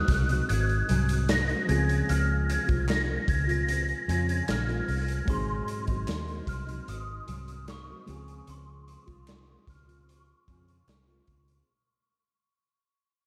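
A straight, unhurried 4/4 pulse at 75 BPM comes from a raw garage drum kit, gritty and saturated with a punchy kick, and from a round, foam-muted vintage electric bass sitting up front, while faint group handclaps arrive at 1.3 s. Over this dreamy, sunny bedroom-pop groove in Db major, a glockenspiel played with rubber mallets carries a mellow, bell-like melody with an ensemble chorus, backed by a full-bodied fingerpicked steel-string acoustic guitar whose chorus adds a warbly pitch drift. A worn, reedy electric piano, slightly out of tune, sits in the background as the chords move between Ab7 and Dbmaj7 in a dry room, all under a fade-out across this short cut from a longer piece.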